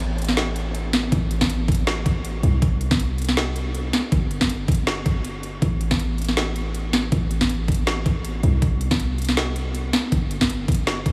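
Future bass at 160 BPM in A minor, swung on the sixteenths with a half-time feel, this bittersweet, lush excerpt sits in a dreamy mix soaked in a huge ambient reverb. A deep, boomy 808-style bass with a sine tone, a noise layer and a fast, decaying attack pumps under sidechain compression, while an up-front trap kit supplies a woody snare and crisp hi-hats. From 1.1 seconds an overdriven, knocking electronic kick, layered and re-recorded in a small room, joins the groove.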